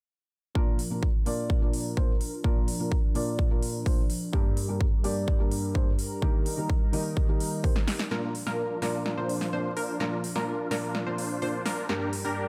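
With light reverb, this uplifting, triumphant festival progressive house excerpt at 127 BPM in Bb major opens with a dark, thick-felt upright piano carrying tape echo and sidechain pumping, a chorused, slow-attack unison pad under a filter sweep, a punchy, tape-warm electronic kick and an overdriven big-room kit of crisp hi-hats and snare. Then, after a drum fill at 7.8 s, a build-up begins at 8.1 s as a catchy plucky unison lead playing arpeggios and huge, detuned supersaw chords through a low-pass filter join, both sweeping and pumping.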